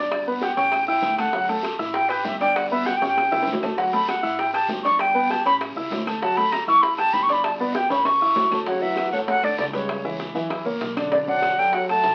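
Afro-Cuban jazz with a lively, sunny mood, this brief excerpt from a longer piece moves at a brisk clip in straight 4/4. An airy silver flute sits up front, carrying the melody with vibrato and a soft attack, while a concert grand piano, smooth and deep in the bass, accompanies close beside it. Underneath, a dark, thumpy pizzicato upright bass with gut strings stays in the background, and a percussion bed of tight, high-tuned bongos, ringing metal-shell timbales, a raspy, distant guiro and very quiet woody claves drives the groove, with drum fills at 3.0 and 7.9 seconds. At 8.7 seconds the harmony shifts from its repeating cycle of G, A and D chords toward a Dmaj7-to-Bm7 turn, and a trombone with cup mute enters on a veiled, breathy second line with scooped notes and a whispered, intimate quality. The whole is heard through a small, wet room and the crackle of a very old 78 rpm record, giving it a worn, vintage cast.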